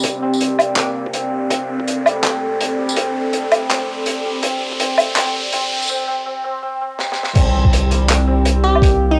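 Half-time drum and bass with a spacious, cinematic mood, this excerpt opens on a moody, detuned analog pad pumping under sidechain and a mellow santur ringing out arpeggios through analog delay. Alongside them from the start, a crunchy, gritty breakbeat kit with a high-tuned snare and dark cymbals plays with a thumpy, pitched-down electronic kick, and an electronic riser rises through a filtered build-up. Everything but the kick and the riser carries on through a break before a drum fill at 7.0 seconds. At the drop at 7.4 seconds, a thick saturated sub bass and an impact arrive, with a crystalline, wave-folded wavetable pluck entering at 8.6 seconds, all wrapped in the character of a home cassette recording.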